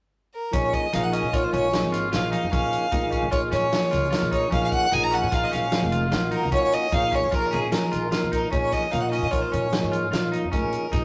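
A clear, smooth violin opens alone at 0.3 s, bowed up front with vibrato and trailed by tape echo, before the full band joins at 0.5 s in this tense, intricate progressive instrumental cut from a longer piece. Set in Bb minor at 150 BPM in an uneven 5/4 with a straight feel, the music moves from Bbm7 to Gbmaj7 and back to Bbm7 as a new section begins at 8.5 s. Beneath the violin melody, a tonewheel organ supplies accompaniment with key click and the slow churn of its rotary speaker, while an electric guitar at the edge of break-up picks twangy arpeggios. A woody pizzicato upright bass anchors the low end, and a vintage drum kit with a fat snare, punchy kick, hi-hat and rolled-off top drives the rhythm. The whole is captured as a rough rehearsal-room recording bathed in wet studio reverb.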